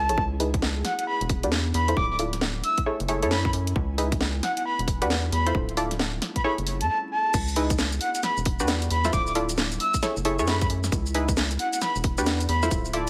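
Vinyl crackle and a light digital reverb frame this moody, skippy two-step garage cut, where a tight, tape-warm electronic kick and an up-front garage kit with a cracking snare, hi-hat, shaker and crash drive a swung groove under a rubbery, nasal square bass. A breathy, flute-like synth lead carries the melody through chorus, cassette-tape colour and dub echo, while punchy sawtooth chord stabs, also chorused and echoed, filter-sweep through the opening section over a very quiet, ethereal pad. At 7.3 seconds the track drops into its second section, cycling the same minor-seventh chords until the passage is cut off.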